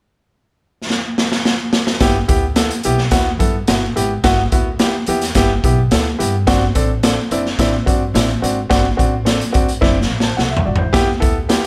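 A raw, gritty garage drum kit sits up front in a small, pumping room, its boomy kick, medium-tuned snare, hi-hat and toms saturated and rolled off at the top, opening with a fill at 0.9 seconds in this joyful, uplifting slice of uptempo 1960s-style soul at 108 BPM in G major. At 2.0 seconds a clear, intimate grand piano, with its action noise audible, enters together with a woody, dark pizzicato upright bass on steel strings, moving from G6 to D7 and back to G6. A second drum fill at 9.8 seconds closes this short section cut from a longer piece, all captured dry with little reverb.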